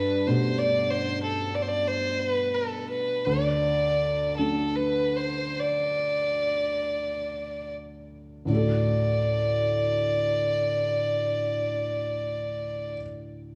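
A dark, woody solo fiddle carries the melody up front with light vibrato and portamento over a soft, felt-muted upright piano whose mellow, intimate tone and audible action noise lend a vintage air, in a tender, pastoral Celtic folk passage in D mixolydian that moves freely between 39 and 64 BPM, slowing through its first 8.5 seconds as the harmony shifts from Gadd9 to D at 3.3 seconds, with the fiddle stopping at 13.0 seconds while the piano continues briefly in a moderate scoring-stage reverb.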